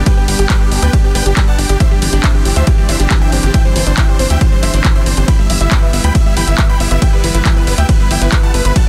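A dense, heavily limited modern master in digital ambience carries this euphoric, uplifting trance excerpt at 138 BPM in straight 4/4, where a huge detuned supersaw lead with dub echo sings the melody over a lush, warbling pad, a tight, driving sequencer bass and a round analog pluck arpeggio, all pumping to the sidechain, while an up-front layered electronic kick and an overdriven analog drum machine's handclaps, hi-hat and ride cymbal drive the G, Cadd9/G and Em/G chords, and a clear, boxy baby grand piano adds a very quiet second line.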